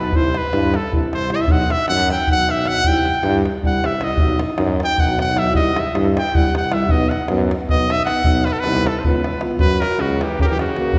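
Fiery and restless, this Balkan brass band cut in a driving 7/8 is led by a bright, punchy trumpet soloing up front with light vibrato, while a mellow, vintage-toned French horn and a distant, roomy euphonium sit in the background beneath it. A clear tuba carries the bass and a tight, close davul keeps the pulse, with the ensemble heard from further back in a concert hall whose reverb is wet and lingering. At 9.6 seconds the trumpet's solo gives way to a new section where a present, pop-style alto saxophone enters with vibrato as a second line.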